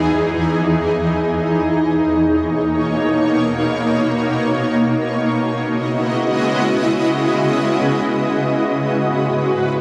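Cassette-recorded at home with a moderate studio reverb, this floating, blissful hip hop fragment in B major drifts in free time as a solo shimmering ambient pad that, detuned and granular with an octave-up shimmer, slow attack and long release, sits bright and up front under chorus, built-in reverb, tape character and analog delay across its 9.8 seconds, gliding from Emaj7 through Bmaj9 and C#m11 before settling on G#m7 at 8.6 seconds.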